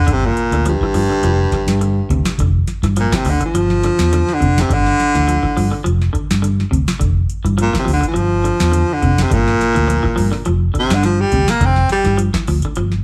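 Afrobeat at 104 BPM in G dorian with a defiant, intense mood, cut from a longer piece: a breathy, punchy baritone saxophone solos up front with light vibrato until 12.2 seconds over a G7(no3) chord, backed by twangy, slightly broken-up electric guitar arpeggios shimmering with tremolo, a round, dark fingered electric bass, and a dry, booming analog drum machine with overdrive, a deep kick, crisp snare and metallic hi-hats, all played together as a live band in one room with moderate studio reverb.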